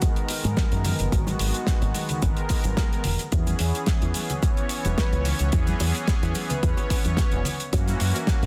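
The punchy, layered electronic kick sits up front in this short nu-disco excerpt, driving a sleek, groovy 4/4 pulse at 109 BPM with a light swing on the sixteenths. Beneath it, a round, dark fingered electric bass with an envelope filter enters at 0.4 seconds, pumping through sidechain compression. A damped 70s drum kit adds a dry, medium-tuned snare, hi-hat and cabasa in a small room, while very quiet bongos and congas ring close and dry. A smooth sawtooth analog pad, detuned and softly sustained with chorus, tremolo and tape echo, carries the harmony from G#m7 to E6 and on to F#7. At 5.0 seconds a thick unison lead holds a single B4, its vibrato and moving notch colored by cassette tape and echo, sitting back in the mix until 7.1 seconds, all under a dense, heavily limited modern master with light reverb.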